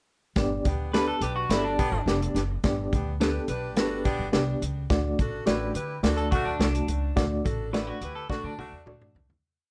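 Uplifting and joyful, this short uptempo 1960s-style soul piece in G major runs at 106 BPM in a straight 4/4, moving from G to D under light reverb. A tight, roomy drum kit drives a soul beat with the snare on all four beats, and a woody, thumpy upright bass plays a syncopated line with chromatic approach notes. A reedy, worn electric piano with fast tremolo pushes quarter-note chords, while a dark, clean guitar with tremolo adds short chops on the backbeat. An edgy saxophone section with tape echo plays short riffs, a slightly broken-up guitar in lush chorus drops in short fills between phrases from 0.9 s and again from 6.2 s, and the piece fades out from 7.2 s as a closing drum fill rolls in.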